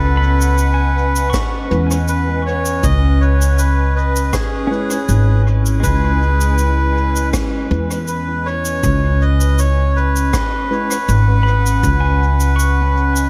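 A woody, thumpy upright bass sits up front in this meditative, hazy ambient dub fragment, holding a lightly swung groove over a single C#m7 chord. A reedy, breathy melodica carries the melody through analog delay above a warbling, nostalgic tape-like pad with chorus, while a bright pedal steel guitar picks arpeggios in the background. A natural cabasa and rim click with dub echo arrive at 0.4 seconds, a dry, deep electronic kick drum joins at 1.3 seconds, and a mellow tine electric piano adds gritty, echoing stabs from 1.7 seconds, all wrapped in an echo-heavy mix.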